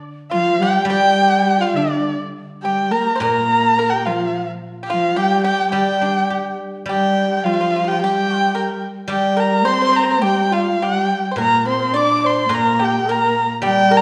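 At 0.3 seconds a dark, nasal erhu enters up front with the melody, joined at once by a woody cello, a pipa and a reedy low xiao carrying second lines. A mellow guzheng follows at 0.8 seconds with a ringing, silvery accompaniment played with fingerpicks. This is a graceful, wistful passage of Chinese traditional chamber music in G yu mode, moving at 106 BPM in 2/4 with a rubato feel. The single bowed erhu sings expressively with vibrato, portamento and a soft attack, while the cello sits distant and sul tasto beneath it and the airy bamboo xiao adds crisp-edged vibrato. The bright, percussive pipa stays dry in the background as the music moves into a new section at 6.9 seconds. A recital-hall reverb gives the ensemble a church or concert-hall setting in this excerpt from a longer piece.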